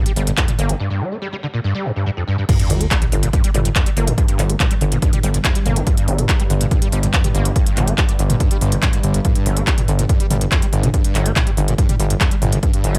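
Dark and industrial, this driving peak-time techno excerpt in G minor runs at 142 BPM in a straight 4/4. A squelchy, resonant acid bass riff, drenched in distortion, chorus, delay and sidechain pumping, starts at once beside a techno kit of smooth hats, handclaps, toms and crash. A saturated, up-front synth bass with oscillator sync and a moving notch holds G1, while a punchy layered kick joins at 0.4 seconds. After a brief break, a very quiet sub drop marks the drop at 2.5 seconds, and from 4.5 seconds an evolving, detuned analog drone with pulse-width modulation sits in the background of a digital ambience.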